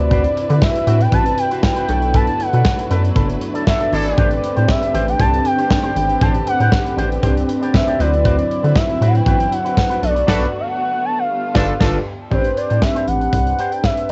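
Recorded at home on cassette, this clip of early-eighties boogie funk has a dry, dulled sound with its top end rolled off, and it carries a danceable, late-night feel in a straight four. A rubbery, hollow square-wave bass with a resonant filter pluck sits up front beside a punchy acoustic drum kit of kick, medium-tuned snare, hi-hat and crash, which comes in at 0.1 seconds. Over them, a smooth lead with detuned sawtooth tone, vibrato and portamento glides through the melody, while a glossy chorused polysynth with pulse-width movement and a filter sweep fills out the accompaniment. A twangy, clean electric guitar through an envelope filter plays a picked riff, and a lush bowed string section holds sustained chords in the background until 12.3 seconds. A distant, roomy horn section with octave doubling and tape echo adds brief second lines, most notably from 10.3 seconds during a band accent, as the extended chords move toward a closing Am11.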